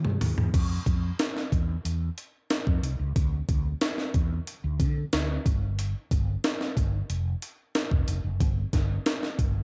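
A gritty, pitched-up breakbeat sampler-style drum kit with a thumpy kick, high-tuned snare, crash, hi-hat and toms opens with a fill at 0.0 seconds and stays up front, compressed and re-recorded in a large room with a cassette-tape tint, while a dark, round, amped fretless electric bass with an ensemble chorus sits alongside it in this glossy, upbeat excerpt of polished 1980s jazz-funk pop at 92 BPM in a straight 4/4, captured as a dry home cassette recording that tops out at 7.8 kHz.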